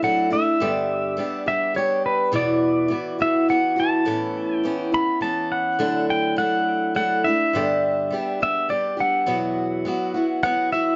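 A dark studio sound with moderate large reverb frames this hopeful, nostalgic rock excerpt at 104 BPM in 3/4, where an up-front, clean, compressed pedal steel guitar played with fingerpicks carries the melody with slide and volume swells over a boxy, picked old ladder-braced acoustic guitar moving through Dadd9, G, Esus2 and Aadd9.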